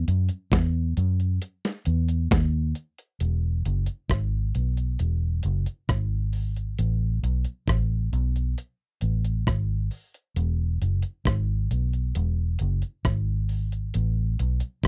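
A straight 4/4 pulse at 67 BPM carries this uplifting, sunny roots reggae cut in E major, taken from a longer piece. A vintage muted electric bass, played with the fingers, sits up front with a dark, round, foam-muted amped tone between E1 and F#2, joined at 0.1 seconds by a gritty, compressed sampler-style drum kit of hi-hat, thumpy kick, rim click and medium-tuned snare. The sound is dry and close, like a 1970s studio session.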